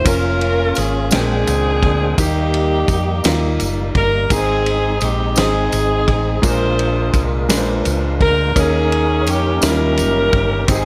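Soulful and hopeful, this slow gospel passage moves at 56 BPM in a straight 6/8, cut from a longer piece. A clear, smooth-topped saxophone section carries the melody up front with pop-style vibrato, while a natural-sounding grand piano supplies accompaniment beneath it. A fat, clean tonewheel organ holds sustained chords in the background, its slow rotary speaker and key click adding shimmer. A dark, round hollow-body electric bass sits punchy and up front, joined at 0.1 seconds by a dry, mid-forward soul drum kit with a tight kick, fat snare, ride cymbal and rolled-off top, plus a jingly, close tambourine. The harmony travels from Bbm/F through Bb13 and Eb to Ab, then Bb7 and Eb7, all set in light studio reverb.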